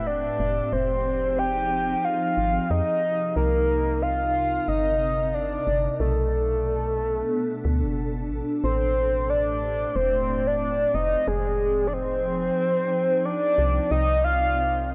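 Swung sixteenths in 4/4 give this short, cerebral IDM fragment an intricate, lightly shuffled gait, as a warbling, nostalgic lead with detuned vibrato and chorus sits up front to carry the melody through a drifting progression of minor ninth and seventh chords. Beneath it, a glassy FM pad holds ethereal sustained chords with slow attacks, ensemble chorus and phaser, while a woody, round FM bass lays down soft, dark, decaying notes. The passage moves from its opening section into a second one at 8.6 seconds, all bathed in a light digital ambience.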